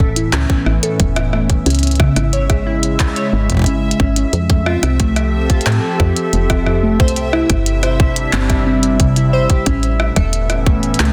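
A dense, heavily limited modern mix set in a moderate echo chamber opens this playful, intricate IDM fragment at 90 BPM in straight 4/4, tuned to A4 = 437 Hz and moving through Aadd9, C#m, Fmaj7 and C before returning to Aadd9. A tight electronic kick sits up front beside a round, woody FM bass, while a glitchy kit of handclaps, clicky hi-hats and rim clicks joins at 0.2 s, its snare softly clipped. Above them, a ringing, harp-like synth pluck runs arpeggios through chorus and tape echo, a nostalgic, detuned tape pad warbles in sustained chords, and a faint, resonant filter texture bubbles on a high E5.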